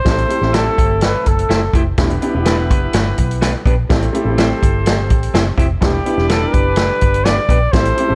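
A straight 4/4 groove at 125 BPM, driven by a punchy, swinging big-band drum kit with hi-hat, kick and snare and a gritty vintage sampler edge, powers this driving, passionate excerpt of uptempo 1960s-style soul in E minor, tuned to A4 = 444 Hz. A dark, round, foam-muted fingered electric bass and a woody upright piano with short sustain carry the Am7 and Em7 changes, while a slightly broken-up, lo-fi electric guitar adds background stabs and a clear horn section in octaves supplies a second line. Up front, a mellow, breathy, close-miked trumpet sings an intimate, vibrato-laden melody from 0.0 to 1.8 seconds and again from 5.8 seconds, all set in a small room ambience.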